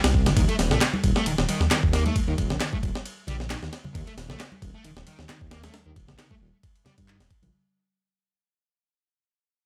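Gritty and swaggering, this short breakbeat cut from a longer piece rides a 134 BPM groove in 4/4 with a light swing on the sixteenths, fading out across its full 7.5 seconds. A sampler-style break kit sits up front, compressed and pitched up, with a thumpy kick, a medium-tuned snare, ride cymbal and a tape-warm character in a small room. Beneath it a dark, detuned sawtooth bass rumbles deep between Eb1 and G2, its beating unison voices joined by a sine layer, the sustained notes pushed through tube saturation. Bright, close congas played with hard hands join at 0.3 seconds in the background, and layered electronic handclaps arrive at 0.8 seconds. A double-tracked fuzz guitar picks a distorted riff between Eb3 and Bb3, roughened by vintage 12-bit sampler crunch and tape echo. The whole recording is dry and raw, with a hardware edge.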